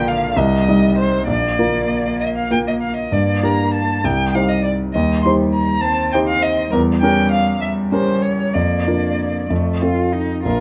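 Cheerful and lively, this quick classical-period movement for piano trio moves in a lilting 6/8 with a flexible, rubato feel, tuned slightly high at A4 = 445 Hz. A single bowed violin carries the melody from Bb4 up to C6 with a warm, smooth and even tone and vibrato. Beneath it, a solo cello sings a rich, expressive second line between D3 and F4, colouring its notes with vibrato and portamento. The grand piano, placed up front with a clear, polished and intimate sound, supplies the accompaniment across a broad span from Bb1 to Eb5, its short sustain and audible action noise adding a close, tactile quality. The harmony moves from Cm through Bb, Gm and an Edim7 before settling on Bb/F and F, all three instruments playing together throughout this brief section cut from a longer piece, with light reverb and close, detailed microphones.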